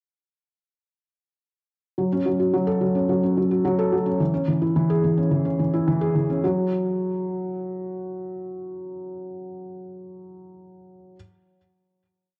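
Intimate and melancholic, this short electronica piece in F# minor moves at 108 BPM in a straight 4/4. A lone felt-muted upright piano, heard from 2.0 to 11.2 s, plays an eight-step arpeggiated sequence between E3 and A4. It sounds soft, dark and close up front, with thick felt and audible action noise. The sequence builds from 2.0 to 6.4 s and resolves into a final chord that holds until 8.6 s. A moderate spring reverb and the intimacy of a home cassette recording frame the piano.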